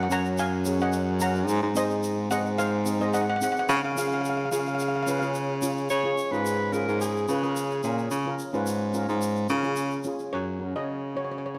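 Calypso at 109 BPM with a festive, carefree mood, this excerpt sets a shimmering lead steel pan melody, played with hard rubber sticks, over mellow cello pans, a grainy egg shaker and an up-front baritone saxophone bass with vibrato and soft attack, while a breathy alto saxophone with scooped notes adds a second line from 5.9 to 8.5 seconds before the lead pan returns at 10.3 seconds, all in a dark production with light reverb.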